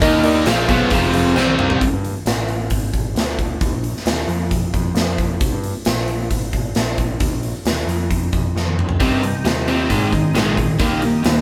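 A brooding, swaggering classic rock passage in 4/4 at 134 BPM opens with guitars, keys, bass and drums striking together, cut from a longer piece. Two overdriven electric guitars, one bright and compressed and the other warm, share a riff with a double-tracked fuzz guitar, all set back in the mix. A reedy, lightly overdriven electric piano adds a fill, and a thick, gritty tonewheel organ holds very quiet sustained chords through a slow rotary speaker. From 0.5 seconds a distant, jingly tambourine sits faintly in the background. At 1.8 seconds the piano, organ and guitars stop, leaving the growling, punchy picked bass and an up-front, big-room drum kit with a punchy kick and medium-tuned snare to carry the groove over sparse chords. At 9.0 seconds the two overdriven guitars and the organ return, joined by a very quiet, full-bodied steel-string acoustic guitar over a Cm, Ab, Eb progression, all under light reverb in a live-room sound.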